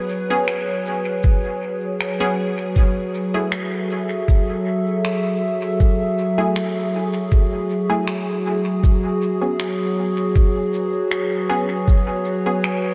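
This ambient dub excerpt moves at 79 BPM in 4/4 with a light swing, settling into a meditative, hazy mood in F# minor. A warbling, tape-like pad carries sustained chords with a slow attack and long release, its detuned, wave-folded tone sounding nostalgic and lo-fi, thickened by chorus and its own reverb. A filtered dub chord stab with a fast attack and short decay adds muted, plucky accents, treated with chorus and dub echo. Acoustic cabasa and finger snaps sit low in the mix with a natural hall sound and echo trails. A compressed, pitched-down electronic kick arrives at 1.2 s, thumpy and muffled up front. The harmony drifts from F#sus24 to F#m9 at 2.8 s and returns to F#sus24 at 8.8 s, all bathed in a dreamy, reverb-soaked space.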